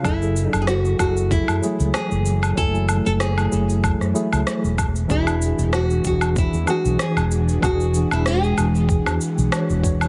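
A heavily compressed, radio-like sound with a light reverb and a softened top end frames this short sunset chillout excerpt, relaxed in mood and gently swung in 4/4. A mellow, clean tine electric piano carries the accompaniment through a tape echo, while an ethereal, airy pad with a slow attack and long release sits in the background, its detuned sawtooth body shimmering with ensemble chorus and phaser. Up front, a fretless electric bass has an amped, tube-saturated roundness, and a gritty, thumpy electronic kick drum with a tape-warm character anchors the groove alongside layered electronic woodblock, shaker and rim click that sound re-recorded in a small room. A fingerpicked nylon-string guitar with a deep classical tone enters at 0.1 seconds to carry the melody in a narrow range, also touched by tape echo, and stops at 9.5 seconds. The harmony moves from F#m9 to E9 at 4.8 seconds.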